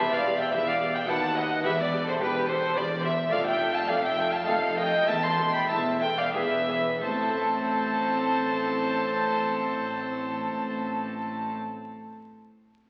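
A straight 3/4 pulse between 87 and 108 BPM drives this dramatic baroque-style concerto fragment in A minor, broadening from 2.5 to 7.0 seconds before the music settles onto A minor. An up-front solo violin with a rich, reedy gut-string tone and light vibrato carries the melody, doubled by a warm violin section, while a second violin section plays a supporting line. A nasal, dark viola section and a bright single-strung harpsichord accompany in the background, a close cello section and a background double bass section anchor the bass, and the whole is heard through a reverberant scoring stage on a crackling old 78 rpm record.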